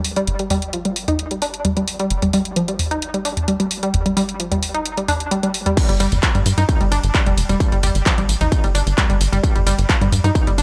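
A tight, punchy sequencer bass and an overdriven, up-front techno kit of hats, claps, tambourine, toms, ride and crash open this driving, hypnotic peak-time techno excerpt at 131 BPM, pumping against the sidechain over a G5 chord, with a round, detuned analog pluck joining at 0.2 seconds to spin its riff through chorus, dub echo and a filter sweep. At 5.8 seconds the music drops and a layered, distorted electronic kick arrives to drive the industrial groove onward. The mix is echo-heavy with only light reverb.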